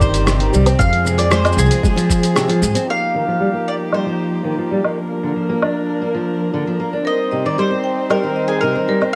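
A brilliant, fingerpicked steel-string acoustic guitar sits up front with arpeggios in this hopeful, delicate folktronica piece at 115 BPM in Eb major, cut from a longer work; its low-pass filter and tape echo are joined by a filter sweep from 2.9 seconds. A double-strung mandolin carries the melody with tape echo over smooth, bowed chords from a chamber string quartet, while a growly pizzicato upright bass and a thumpy, pitched-down electronic kick open the piece before the bass drops away at 2.7 seconds. A muffled, lo-fi sampler-style kit of hi-hat, rim click, shaker and woodblock runs throughout under its own filter sweep, and an airy marimba with hard mallets adds a second line from 7.0 seconds as the chords move from Cm and Fm through Ebadd9 and Bb.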